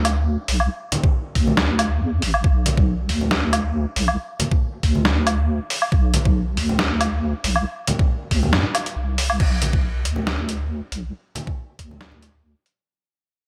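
Riding a half-time 138 BPM pulse in 4/4 with a light 16th-note swing, this brooding, meditative deep dubstep excerpt in B phrygian opens on its drop with a dark, wobbling sine-and-triangle bass under chorus sitting up front from 0.0 s, a gritty, pitched-down sampler-style trip hop kit of crash, hi-hat, medium-tuned snare and woodblock soaked in gated reverb, a knocking, tape-toned electronic kick entering at 1.0 s, and distant, low-tuned thick-skinned congas trailing dub echo in a large room, all framed by light reverb and bright 1980s-style digital production before a short break and a fade-out from 9.4 s.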